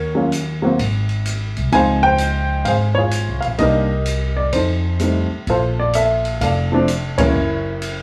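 The recording places the trio a little back in a studio room with a fairly short, wet reverb, giving the 8-second clip an intimate, close-knit feel even at that distance. It's a warm, swinging jazz piano trio at 128 BPM in 4/4, with a swing feel on the eighth notes. The baby grand carries the melody between E3 and Ab5, its short sustain and audible action noise up front and touched with plate reverb. Beneath it the upright bass plays pizzicato on steel strings, woody and present, from F1 to F2. The acoustic drum kit enters at 0.3 seconds, sitting lower in the mix with dark ride and hi-hat cymbals and a boomy kick. The harmony moves through Ebm7, Ab, Dbmaj7, Cm9, F9 and Bbmaj7 before landing on Gb7, with the band striking an accent at 7.1 seconds.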